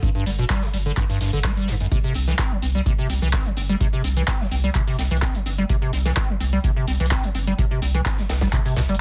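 A straight 4/4 pulse at 127 BPM drives this playful, raw acid house fragment, built on a deep electronic kick re-recorded in a large room, a booming analog drum machine with handclaps and metallic, tape-warm hats, and a very quiet acoustic studio kit adding hi-hat and a medium-tuned snare. Up front, a squelchy, resonant square-wave acid bass riff with a filter sweep, tube saturation, subtle chorus and dub echo moves between F#2 and C4. A thick, saturated triangle sub bass with sidechain pumping enters at 0.3 s, and the harmony settles on C5 from 1.9 s, all under light reverb and a dense, heavily limited modern master.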